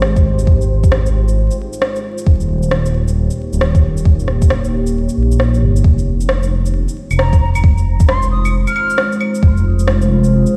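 A knocking, overdriven electronic kick sits up front in this ghostly, wistful future garage excerpt, moving at 134 BPM in 4/4 with a swung sixteenth-note feel in F minor, and it drops out briefly between 5.0 and 5.8 seconds. Beneath it, a dark detuned saw bass rumbles low with a beating, gritty tube-saturated edge and a sidechain pump. An electronic rim click, shaker and claves add a layered, overdriven top end in a studio ambience. A deep, moody ambient pad holds slow-blooming chords through Abmaj7, Eb7 and Fm7, thickened with chorus and its own reverb and breathing with sidechain pumping. At 7.2 seconds an airy, bright wooden flute slips in with a short, straight-toned tongued phrase, roughened by 12-bit sampler grit and trailed by dub echo. The whole mix sounds as if played on a big sound system in a bare stone room, with vinyl crackle adding a worn patina.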